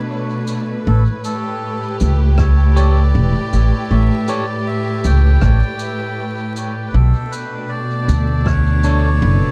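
A dark, crackling vinyl haze in a small room frames this hazy, meditative ambient dub fragment, where a lush bowed string section holds sustained chords from the start, a woody pizzicato upright bass sits up front, a reedy, breathy melodica carries the dub-echoed melody from 0.9 seconds, and a distant shaker and rim click, a deep electronic kick arriving at 2.4 seconds, and twangy clean electric guitar stabs, also soaked in dub echo, stay tucked in the background.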